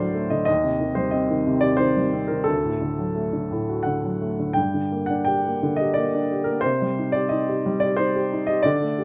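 Closely miked and finely detailed with a light touch of reverb, this short passage from a longer classical work places a woody, warm upright piano up front. The solo piano plays a lyrical, moody line in 3/4 at about 88 BPM, with a cool, rubato feel and uneven beats that give it a freely breathing pulse. Ranging from D2 to G5, it moves through Cm/Eb, D, Gm and back to Cm across its 9 seconds.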